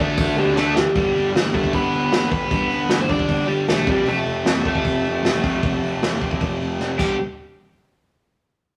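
A compressed, overdriven electric guitar carries the melody up front in this energetic, rowdy punk rock cut, pushed along by a punchy vintage drum kit played with brushes, its dark cymbals and medium-tuned snare heard in a stone-walled room. Behind them, a bright distorted guitar and a sludgy one play riffs over a growly, fuzz-laden picked bass, while a thick, double-tracked fuzz guitar appears only briefly before stopping at 0.8 seconds. Drum fills at 0.6 and 6.8 seconds frame the rough rehearsal-room sound, which breaks off at 7.2 seconds.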